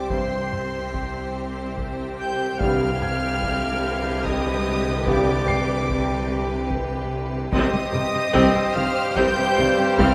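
In a straight 3/4 pulse, this brief, mysterious and ominous suspense cue has a clear, intense violin section carrying the high melody while a solo clarinet and a rich, smooth violin section hold second lines, with violas, cellos and a focused double bass section bowing lush support beneath. Mellow French horns and soft-attack trombones sustain chords in the background from 0.1 seconds, alongside an icy, crystalline glass pad with chorus and its own reverb, a very quiet, dark, boxy grand piano and a faint, warm violin texture up high. Heavy-stick taiko drums play from 0.1 seconds onward, timpani on medium mallets sound only between 2.6 and 3.8 seconds, and a scoring stage reverb gives the ensemble a distant, spacious sheen.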